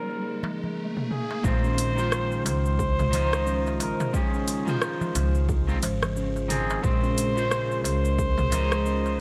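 Under a light reverb, this organic downtempo excerpt has a warm, earthy sound, moving at 89 BPM in 4/4 with a 16th-note swing. A bucket-muted trumpet carries the veiled, mellow jazz melody with vibrato and digital delay, over a twangy, slightly broken-up electric guitar touched with 12-bit sampler grit, delay and sidechain pumping, and a smooth, warbling analog pad with chorus in the background. An electronic riser opens the piece, and a filtered deep house kit of cabasa, hi-hat, rim click and toms arrives almost at once, joined by a crisp, metal-shelled darbuka in the background. At 1.4 seconds the harmony moves from Bbm7 to Dbmaj7/Bb. There the woody pizzicato upright bass steps up front with sidechain pumping, a punchy layered electronic kick drops in, and a buzzing kalimba spins soft, airy arpeggios through delay. The chords return to Bbm7 at 6.8 seconds as the groove rolls on.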